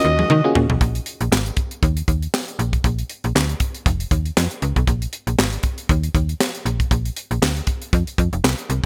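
A tight funk drum kit with a high-tuned snare, a tight kick, hi-hat, toms and handclaps drives a swung sixteenth-note groove, opening with a fill in the first 0.8 seconds in this danceable, late-night slice of early-eighties boogie funk. In that opening moment, a raspy, gritty alto saxophone with vibrato and digital delay touches a single high note, while a mellow FM electric piano with a faint noise layer, a twangy, slightly broken-up electric guitar riff with ensemble chorus sitting in the background, and a lush, very quiet bowed string section briefly sound together. The slap-like FM bass, snappy and metallic up front, plays from the very start and, once those parts fall away, carries the harmony alongside the drums through to 8.8 seconds. The chords move from Ebm7 through Absus2 and Bb, passing through chordless breaks before landing on F5. The bright, 1980s-style digital production is finished with light reverb.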